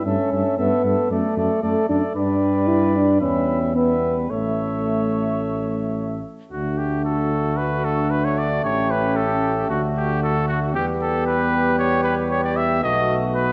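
Triumphant and noble, this classical brass quintet excerpt moves with a rubato feel as a warm, smooth-topped trumpet carries the melody up front over a clear flugelhorn second line with light vibrato, a dark, distant French horn and a bright, vintage trombone in the background sharing the accompaniment, and a mellow, soft-attacked tuba anchoring the bass from 0.1 seconds, all set in a moderate scoring-stage reverb.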